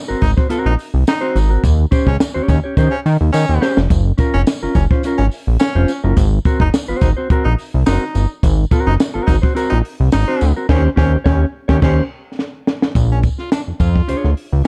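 Funk at 106 BPM in a straight 4/4, this gritty, energetic cut from a longer piece moves over rich chords such as Ab9, Eb13 and Gbmaj7 before landing on a Bb7#9 as a new section begins at 13.0 seconds. A fat analog bass sits up front, thick and saturated, its detuned sawtooth and square tones colored by ring modulation and a filter sweep. A compact cocktail drum kit, also up front, offers a punchy kick, a high-tuned snare and a rolled-off top, with fills around 3.3 seconds and again just before the change. A mellow, clean electric guitar fingers dark accompaniment alongside a clear baritone saxophone playing a smooth second line, while a faint, jingly vintage tambourine adds sparkle. The band lands a shared accent from 10.7 seconds, and a studio reverb wraps the whole mix in a dark, warm glow.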